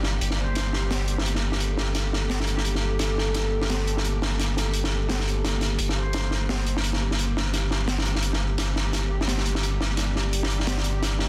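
Heavy and spacious, this half-time drum and bass excerpt sets a crunchy, gritty breakbeat kit with a high-tuned snare and a thick, saturated sub bass up front beneath a moody, detuned ambient pad and a bright, pulsing gated texture, both chorused in the background, while a very quiet, airy flute drifts in from a distance with brief vibrato phrases at 0.4 and 6.0 seconds.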